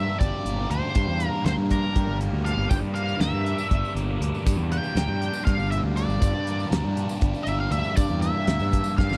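A dry, close 1970s-style studio sound in a small room frames this dark, hypnotic psychedelic rock passage in G dorian, cut from a longer piece and driving at 240 BPM in eighths in a straight 7/8 over a Gm chord. An octave-fuzz lead guitar, shadowy and distorted with wah and tape echo, takes a solo from the start, while a bright, double-tracked fuzz guitar with phaser picks out the riff up front alongside a growly, overdriven fingered bass. A damped 70s kit with a fat snare, tight kick and rolled-off top joins at 0.2 seconds and plays a fill at 9.0 seconds, and a jingly tambourine sits in the background from 2.7 seconds.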